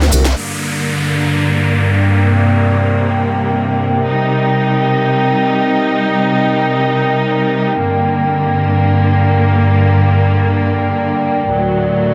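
Dense, heavily limited and bathed in a lush hall reverb, this swaggering, aggressive house excerpt in free time and G minor puts a clear, up-front symphonic string section with light vibrato on sustained chords, roughened by vintage 12-bit sampler grit and a low-pass filter, moving through Gm, Cm, Gm and D, while an electronic downlifter sweeps from 0.4 to 4.1 seconds and a dark, nostalgic, warbling lo-fi pad with chorus and its own reverb fades in at 0.9 seconds and holds to the cut.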